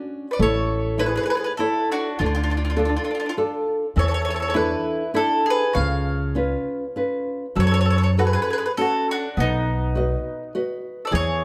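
A bright, picked bowl-back mandolin carries the melody up front in this lively, sunny Italian folk serenade, moving in a rubato 3/4 at about 101 BPM in A major. A classical nylon-string guitar fingerpicks a warm accompaniment from the start, a second, woody-toned mandolin adds a second line from 0.3 seconds, and a dark, thumpy pizzicato upright bass joins at 0.4 seconds. Light reverb surrounds this short excerpt as the harmony passes from A through Dm, E7sus4, C#7 and F#m to B.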